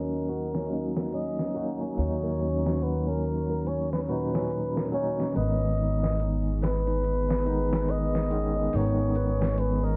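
A dark, raspy bucket-muted trumpet leads this melancholic trip hop excerpt from up front, its veiled, growling tone full of vibrato and scooped notes and trailed by tape echo. Beneath it, a barky tine electric piano with tremolo and sampler grit and a woody pizzicato upright bass with tube saturation play alongside a compressed, gritty sampler-style kit with a fat snare and hi-hat in a swung groove. A warbling, detuned, nostalgic pad with chorus and a boxy, thumb-plucked flamenco guitar under a filter sweep sit in the background, all set in light small-room reverb with vinyl crackle as the chords move from Ebm7 to Abm at 5.4 seconds.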